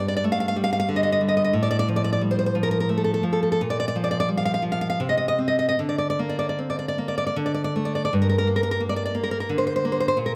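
A solo nylon-string guitar sits up front in a moderate recital hall reverb, its fingerpicked tone warm, with finger squeaks audible on the strings. This wistful, passionate romantic piece in G minor moves in 3/4 with a free rubato feel, drifting between 73 and 95 BPM as the guitar ranges from G2 to F5. Cut from a longer work, the brief passage shifts into a new section at 8.1 seconds, settling onto a G minor chord before it ends at 10.4 seconds.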